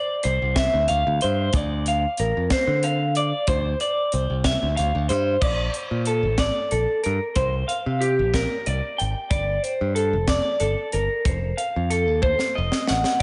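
A big arena sound with a lush hall reverb frames this wistful, intricate math rock and midwest emo excerpt in 6/8 at 62 BPM, where a twangy, slightly broken-up electric guitar through a small old amp plays up-front arpeggios with phaser and slapback echo over a bright, direct picked electric bass and a crisp fusion drum kit with dark cymbals, a high-tuned snare and a punchy kick, moving from Dm7 and Bb through Bbmaj7, C9sus4, Gm9 and F7b9 before a drum fill at 12.2 seconds.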